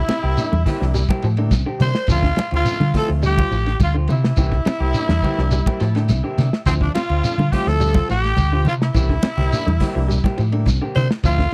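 Afrobeat at 105 BPM with a hypnotic, defiant mood, led by a raspy, growling tenor saxophone melody with tape echo over a second gritty tenor line, lo-fi guitar arpeggios with vibrato effect and slightly broken-up guitar stabs with spring reverb, a round, up-front fingered bass, a dark, tight soul drum kit, damped congas, a grainy shekere and a reedy overdriven combo organ with spring reverb that plays a fill from 5.5 to 6.7 s, all cycling between C7 and Dm7 in a dry, close 1970s-style studio sound.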